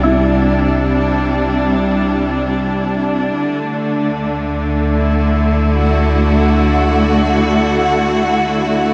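Floating in free time, this ambient excerpt feels luminous and warm from its first moment. A bright studio string section sits up front, its close, bowed ensemble sound carrying intense vibrato as it holds sustained chords, moving from C to D at 3.3 seconds. Beneath it, a deep rumbling drone anchors the bass with an ominous, dark tone built from detuned triangle and sawtooth waves, swelling in with a slow attack and lingering with a long release inside its own reverb. A soft, felt-muted upright piano offers a brief, mellow melody in the background, intimate and warm through its thin felt, trailing dub echo until it stops at 2.2 seconds. The whole mix is echo-heavy and bathed in a wet spring reverb, with the top end capped at 11.0 kHz.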